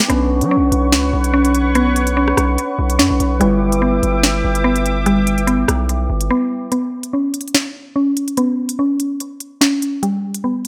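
A woody, chorused FM pluck plays mallet-like arpeggios at the front of this cold, dark drill excerpt in B minor at 145 BPM with a half-time feel, over a saturated, heavy 808-style bass, a drum kit with crisp hats, a sharp snare and rim clicks, a mellow tine electric piano and a detuned, resonant sawtooth pad with a filter swell and slow attack, until the drums drop out at 6.3 seconds and a filter-swept break from 6.7 seconds leaves the pluck and drums in light digital reverb.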